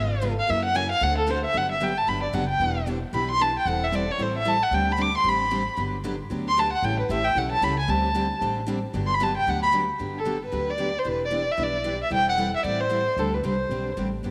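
A dark, smooth-toned bowed violin leads from the first moment, soloing up front with an even vibrato over two bright, picked steel-string acoustic guitars, one of them boxy and set in the background, and a thumpy, woody pizzicato upright bass, in a charming jazz manouche swing at 227 BPM in G major. The violin's solo runs to 10.0 seconds, over changes that settle on Gmaj7, Em7, Am7/E and D7sus4. Its last phrase ends at 13.9 seconds, just before the fragment breaks off, and a wet echo-chamber reverb gives the recording a roomy glow.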